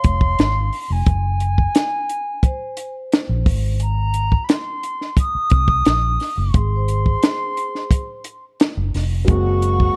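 Silky and smooth, this lush 1970s-style soul fragment sets a pure, crisp-attacked silver flute melody with vibrato over a round, foam-muted electric bass and a dry cocktail drum kit with a punchy kick and high-tuned snare. A mellow vibraphone played with soft mallets rings underneath until 8.2 seconds. Near the close, an intimate concert grand piano with audible action noise enters at 9.2 seconds, joined at 9.3 seconds by a distant, bowed violin section, all within a dark, warm production and small room ambience.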